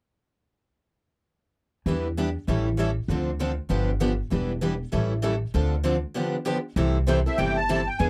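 Acoustic string swing in the jazz manouche style, lively and swinging at 196 BPM in C major, this excerpt from a longer piece sets two picked steel-string acoustic guitars, one boxy parlour with finger squeak and one full-bodied jumbo, over a woody, thumpy pizzicato upright bass on gut strings, all entering at 1.9 seconds and cycling through Em7, A7, Dm7 and G7. After a break at 6.2 seconds the music lands on C6, and a reedy, shimmering musette accordion takes the melody up front from 7.1 seconds. The sound is a dry, close 1970s-style studio recording with light reverb.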